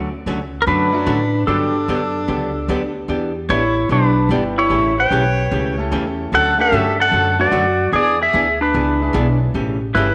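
A swinging 149 BPM groove in 4/4 drives this cheerful, playful western swing clip in D major, where a twangy, up-front lap steel carries the melody with slide and volume swells over a thumpy pizzicato upright bass and a dark, clean archtop guitar, while a dark fiddle with light vibrato and portamento adds a second line and a brilliant upright piano chimes in the background at 0.9 seconds and again from 4.3 seconds, all bathed in a moderate echo chamber reverb.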